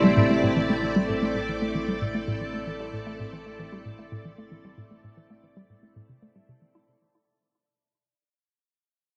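A hollow, bouncy square-wave pluck riff with a fast attack, short decay, chorus and delay drives this hypnotic, expansive stretch of sequencer-driven ambient space music, set over lush, vintage string-machine chords with a slow attack and ensemble chorus, held up front on a single Am7. Beneath them sits a mellow analog drone, detuned and gently evolving through pulse-width modulation, kept in the background as the bass. The echo-heavy mix is bathed in wet spring reverb with a cassette-tape character, and the fragment fades out across its 6.9 seconds.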